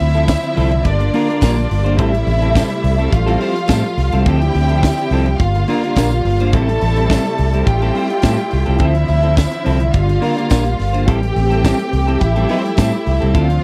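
This danceable, glamorous disco passage, cut from a longer piece, opens with a round, foam-muted vintage electric bass up front, a clean, picked electric guitar in accompaniment, a lush, woody string section holding sustained chords at a distance, and a smooth, even violin section carrying a second line with vibrato. A tight funk drum kit enters almost at once, its high-tuned snare, tight kick and hi-hat sitting up front in a small room. A jingly tambourine joins at 0.3 seconds in the background and drops out at 12.9 seconds. The harmony cycles three times through Dm9, Gm7, Am7 and Fmaj9/A. The sound is dry and close in a 1970s studio style, with little reverb.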